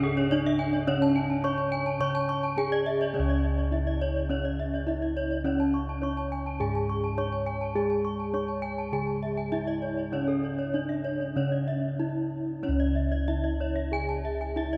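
This Balinese gamelan fragment, cut from a longer piece, moves in a straight 4/4 at roughly 93-108 BPM in a C# pelog tuning, with a shimmering, hypnotic mood. A bronze metallophone carries the melody between C#4 and C#5, struck with a wooden mallet and heard close-miked, full and dry, with a slapback echo and the shimmering beats of paired tuning. Beneath it, a lower metallophone supplies accompaniment in bright, ringing tones from a horn mallet until it stops at 12.6 s. Two further metallophones spin out arpeggios, one reaching as high as C#6, both airy and metallic with paired tuning. Bossed gongs anchor the bass from C#2, played up front with padded beaters for a round, mellow, soft sound. The whole ensemble sits in a vast cathedral space with a 5.5-second reverb that lets the bronze tones hang and blur together.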